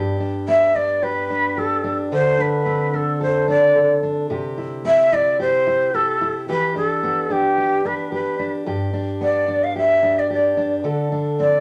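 A straight 4/4 pulse at 110 BPM carries this heartfelt, easy-going acoustic pop passage, cut from a longer piece, with a full-bodied fingerpicked dreadnought guitar sitting up front from 0.0 seconds and moving through G, D5, C and Em7. At 0.5 seconds a breathy, bright shakuhachi joins with the lead melody, its tongued bamboo tone marked by chiff, vibrato and lifted highs. A short, wet studio reverb gives the pair a sense of room.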